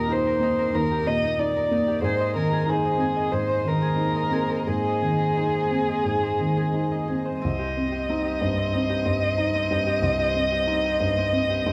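A dark, woody solo violin carries the melody up front, its bowed line marked by vibrato yet sounding slightly distant, in this melancholic, fragile neoclassical excerpt in C minor at 90 BPM. Beneath it, a felt-muted upright piano supplies soft, mellow, intimate accompaniment close to the listener, while a Celtic harp adds bright, ringing fingerpicked arpeggios colored by tape echo. A warm studio string section sits very quiet, holding sustained chords with a soft attack and a pure, floating sul tasto tone. The 4/4 pulse is uneven and rubato, and the harmony moves from Eb to Abadd9 before settling on C minor as a new section begins at 7.4 seconds. Light reverb and close, detailed microphones keep the sound clear and personal throughout this fragment cut from a longer piece.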